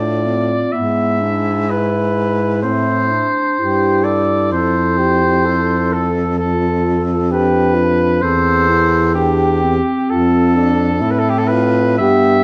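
A warm soprano saxophone carries the melody up front, its light vibrato and vintage tone giving this lyrical classical piece for single-reed quartet a yearning, elegiac voice. It moves at a slow 64 BPM in 4/4 with a rubato feel, and all four parts sound together for the full 12.4 seconds of this passage cut from a longer piece. Beneath it, a close-miked alto saxophone with a clear tone sings a second line, while a dark clarinet with a smooth top supplies accompaniment in the background. The baritone saxophone anchors the bass up front with its own vibrato. The harmony moves from A minor through E7 over G# back to A minor, then settles into F, C over E and F again. A stone room reverb wraps the ensemble in a resonant, dusky production.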